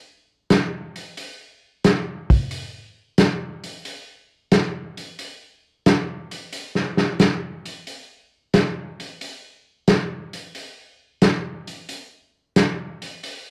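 A vintage acoustic drum kit sits up front from 0.5 s, its punchy kick, medium-tuned snare and hi-hat carrying a muffled, lo-fi character with a rolled-off top, as if captured in a small room. This bluesy, late-night jazz excerpt moves at 90 BPM in 4/4 with a swung eighth-note feel, framed by a moderate studio ambience.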